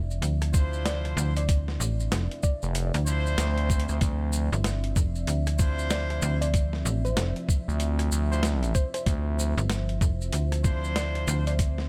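A swung 95 BPM glitch hop groove in D minor, funky and gritty, is built on a thumpy, pitched-down electronic kick sitting up front and a gritty boom bap kit of hi-hat, rim click and high-tuned snare in a small room, with grainy, mellow maracas alongside. A snappy, metallic FM slap bass holds the low end throughout, joined from 2.6 to 9.5 seconds by an aggressive, saturated driven synth bass, while a deep, moody analog pad sustains a Dm9 chord with chorus, phaser and sidechain pumping. Loose, clear horn stabs carry 12-bit sampler grit, tape echo and pumping, and a woody, wave-folded pluck melody sits in the background with chorus and tape echo in this short, dry excerpt.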